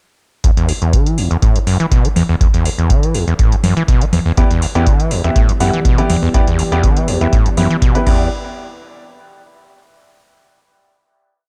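Acid house with a raw, hypnotic pull, built on a deep four-on-the-floor electronic kick and a booming analog drum machine of metallic hi-hats, low congas and crash over a single minor-seventh chord. Up front, a squelchy, distorted sawtooth acid bass runs a sixteen-step line with accents, slides and a resonant filter sweep, pumping against the kick. A present grand piano enters at 4.4 seconds with dotted-rhythm chord stabs in one parallel shape, roughened by 12-bit sampler grit and dub echo, and a moody, detuned analog pad with chorus and pumping swells in slowly in the background from 5.3 seconds before the groove stops on a final hit at 8.3 seconds, all in a dry, dark production.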